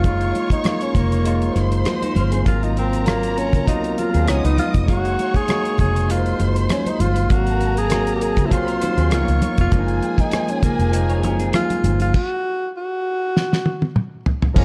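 Smooth and lush, this excerpt of 1970s-style soul at 99 BPM in Gb lydian has a slight sixteenth-note swing and puts a breathy, mellow tenor saxophone with scooped notes up front on the melody, over a distant, bowed violin section, a barky, lightly overdriven tine electric piano, a twangy electric guitar riff with spring reverb that comes and goes in the background, a round, foam-muted fingered bass, a dry, damped drum kit with a fat snare, and very quiet bright congas, all in a dark, warm production until the band stops at 12.1 seconds and a drum fill enters at 13.4 seconds.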